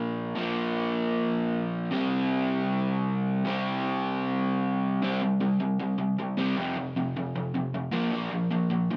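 Upbeat and rowdy, this punk excerpt features a lone crunchy, overdriven electric guitar, picked and double-tracked up front with digital delay in a moderate studio reverb, driving through power chords on Bb, C and F in a straight 4/4 before the passage shifts to a new section at 5.0 seconds.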